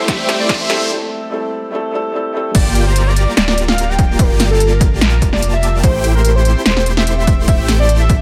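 A half-time 4/4 pulse drives this dreamy, emotional future bass piece, which opens on a build-up with a drum fill, a riser, a short break and a filter sweep before the drop lands at 2.5 seconds. A soft, felt-muted upright piano with audible action noise plays the accompaniment through sidechain pumping and delay, stopping at 2.6 seconds, while a very quiet, breathy pad holds sustained chords beneath. Huge, lush supersaw chords carry the riff with their own pumping, and a riser and downlifter sit in the background until 5.8 seconds. A velvety, smooth synth lead sings the melody with vibrato, chorus and dub echo above a deep, thick saturated sub bass placed up front. The big-room dance kit brings a punchy overdriven snare, crisp hats and crash cymbal, joined by an up-front electronic kick, both re-recorded in a large room and set in a light digital ambience.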